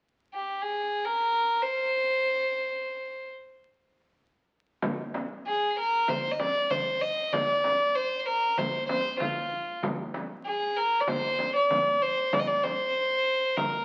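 A single bowed violin, rich and floating with a soft sul tasto attack, sits up front carrying a hypnotic, soulful melody in this fragment of a Turkish makam ensemble piece, joined at 4.8 s by a small, bright frame drum and a clay-shelled, natural-skin darbuka struck with hard hands in the background, the music framed by a moderate large-studio reverb and the crackle of a very old 78 rpm record.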